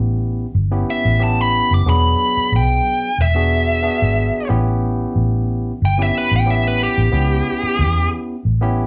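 Laid-back and swaggering, this straight-eighth soul blues fragment rides a round, foam-muted vintage electric bass up front and a bright, barky tine electric piano over A9 and E9 chords, while a dark, smooth overdriven lead guitar enters at 0.9 s to take a picked solo in light studio reverb.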